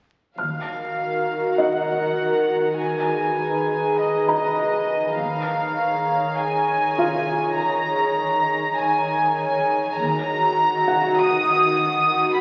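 A straight 4/4 pulse at 100 BPM carries this uneasy, tense suspense film score in Eb minor, cut from a longer piece, where an up-front violin section plays a pure, floating sul tasto melody over a warbling, detuned tape-like pad coloured by chorus and phaser, a dark cello section holds a low Eb beneath, a double bass section touches in briefly at 0.4, 5.2 and 10.0 s, and a felt-muted upright piano adds mellow texture with audible action noise, the ensemble bathed in a wet scoring-stage reverb and heard through the crackle of a very old 78 rpm record.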